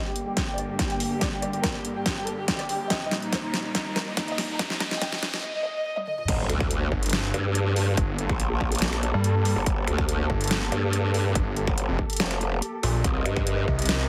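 A bright, wobbling growl bass arrives with the drop at 6.3 seconds, joined at 6.9 seconds by a snarling, detuned sawtooth bass, in this menacing, aggressive half-time dubstep excerpt, where a build-up first sets a soft sul tasto chamber violin melody over veiled, pumping con sordino string chords and a riser and impact in the background, all driven by overdriven electronic drums with a punchy kick, deep snare, finger snaps, hi-hat, toms and crash, and a heavily compressed, radio-like sound.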